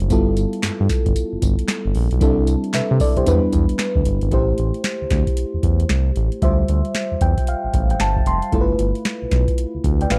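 A booming analog drum machine drives this bouncy, slick new jack swing groove, its deep kick, crisp snare, metallic hats and tambourine sitting up front with a dry, tape-warm punch, while a group handclap with a hollow, live-room character sits in the background from 0.6 to 3.9 seconds. A smooth synth bass blending sawtooth and triangle tones holds the low end, and a mellow FM electric piano with a round, dark, chorused sound carries the extended R&B chords, adding a fill between 6.9 and 8.5 seconds. The close, 1970s-style studio sound carries a touch of digital ambience, and this is cut from a longer piece.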